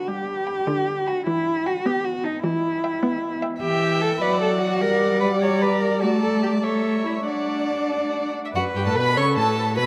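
A lively, cheerful fragment of a quick classical-period string quartet movement in 6/8 with expressive rubato opens with all four players together: a rich, vibrato-laden first violin sings the high melody with portamento, a smooth, even second violin carries the second line, a close, up-front viola fills in the accompaniment, and a warm, soft-attacked cello anchors the bass, all bowed with vibrato and blooming into a vast, echoing cathedral reverb before the phrase turns toward a new section at 8.6 seconds.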